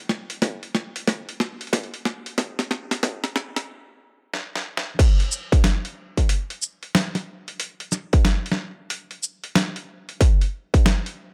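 A gritty, pitched-down sampler-style drum kit opens this playful, swaggering glitch hop fragment at 92 BPM in 4/4. Its compressed medium-tuned snare, hi-hat, shaker and crash sit up front with a 63% swing on the 16ths, and a distorted, layered electronic kick joins almost at once. Drum fills and a filter sweep drive the build-up, a stop cuts in at 3.7 s, and the drop lands at 5.0 s, all in a dry, high-passed mix.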